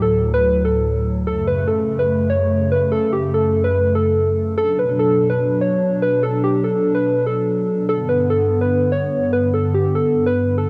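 A half-time hip hop sway carries this triumphant yet wistful fragment of a longer piece: warbly, nostalgic lo-fi synth keys with a detuned square and sawtooth edge play the melody through chorus, cassette tape and analog delay, over a hollow, flute-like pad that holds dark, slow-blooming chords moving from D through F#m and Bm to G, the fragment set in light reverb with the homespun grain of a cassette recording.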